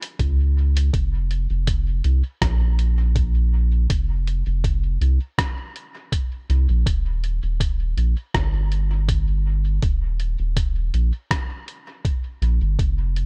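Ambient dub at 81 BPM in 4/4, with a light swing on the sixteenths, this short cut from a longer piece feels deep and spacious. A lo-fi sampler-style drum kit opens at 0.0 seconds, its hi-hat and rim click compressed, pitched down and muffled, trailing dub echo and sitting low in the mix. At 0.2 seconds a round analog bass arrives, dark and sustained with a fast attack and a sine-like, triangle-tinged tone, ranging from Eb1 to Db2 and placed up front. An electronic kick drum enters at the same moment, a thumpy, pitched-down sampler hit that runs until 12.9 seconds. The whole groove sits in a digital ambience that lends the arrangement its sense of depth.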